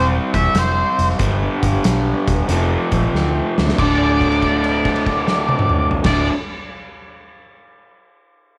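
Lightly reverberant studio sound frames this brooding, gritty blues rock and southern rock fragment at 93 BPM in a swung 4/4 and D minor, where a lo-fi, double-tracked garage guitar riff sits up front over a round, foam-muted fingered bass; an oversized low-tuned kit in a bright stone room enters at 0.3 s with punchy kick and dark cymbals and plays a drum fill at 3.1 s; a very quiet overdriven tonewheel organ holds thick chords through a fast rotary speaker; and a fuzzy octave lead guitar with wah carries the melody into a held note from 3.8 s as the chords move from C through G and F to Dm.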